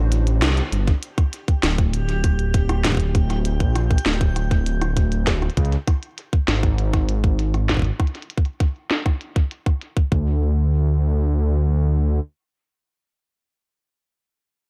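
Cerebral and glitchy, this IDM piece moves at a straight 99 BPM in 4/4. It opens on a brief break where a hollow, flute-like pad holds a D7 chord under a band accent before the harmony settles on G minor. A deep, rumbling detuned saw bass and a tight, up-front electronic kick anchor the groove, while a glitchy kit of tiny snare, rim click and clicky hats runs through low-pass filtering and delay; at 1.4 seconds a reversed, swelling texture drifts in with shimmer reverb, inside a dark, dry mix.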